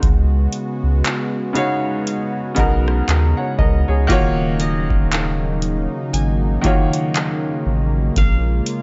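A booming analog drum machine sits up front with a deep kick, metallic hats, handclaps and rim clicks, alongside a round, sine-toned sub bass in this dreamy, romantic contemporary R&B excerpt with a swung sixteenth-note feel. A clear, worn grand piano with short sustain plays accompaniment over a smooth, detuned sawtooth pad with slow attack and chorus, as the chords move from C#7sus4 to D#m7 to A#m7. From 1.6 s a bright, plectrum-plucked qanun adds a faint texture with delay, all within a dark, dry production tuned to A4 = 435 Hz.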